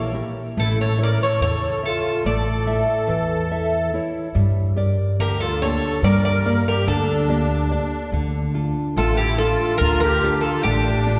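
A metallic, double-strung Greek bouzouki leads this dark, melancholic Greek folk piece, its picked melody sitting up front with some strings ringing in octaves. It moves at 143 BPM in eighths within a straight 9/8 metre. A reedy, close-miked musette accordion carries a second line with a shimmering, full tone, while a full-bodied classical nylon-string guitar fingerpicks the accompaniment, finger squeaks audible. Underneath, a woody, growly upright bass with steel strings plays pizzicato, also placed up front. The harmony opens on Edim before settling on A, then turns to Gm at 4.3 s and Dm at 8.1 s, all heard in a church or concert hall with a long, wet reverb in this section cut from a longer piece.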